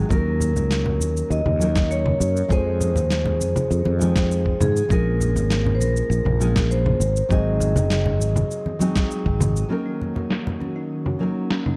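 A straight, steady 4/4 groove anchors this smooth, wistful sunset chillout fragment: a gritty, thumpy electronic kick and a sampler-style kit of shaker, medium-tuned snare and congas, both compressed and re-recorded in a large room, the kit softened by low-pass filtering. Soft-handed acoustic congas sit bright but in the background. Up front, a growly, punchy fretless electric bass sustains beneath a full-bodied, thumb-plucked nylon-string guitar, whose finger squeaks come through its digital delay and shimmer reverb as the chords move through Ebm7, Fm7, Bbm7 and Ab7. The vibraphone, played motor off with medium mallets, carries a metallic, ringing melody through tape echo and shimmer reverb. At 9.7 seconds the harmony returns to Ebm7 as a lush, detuned unison pad with chorus and a woody kalimba with low-pass filter and digital delay enter quietly, while a filter sweep moves across an analog synth pad. 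In the dark production, with light, small-room reverb, the guitar, the electronic kit, the pad and the kalimba play on to the cut at 11.8 seconds.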